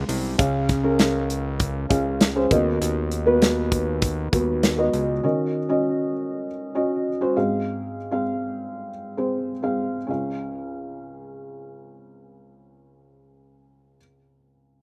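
A felt-muted upright piano, its soft, boxy tone carrying a slapback echo, sets out together with a fat, saturated analog bass and an up-front acoustic drum kit with a tight kick, hi-hat, snare and ride in this excerpt of anthemic, uplifting piano-driven pop. The bass and drums drop away by about 5.2 seconds, leaving the mellow, intimate piano to carry the chords alone through to the end at 14.8 seconds. The sound is dry and close, with little reverb and an outdoor openness free of room ambience.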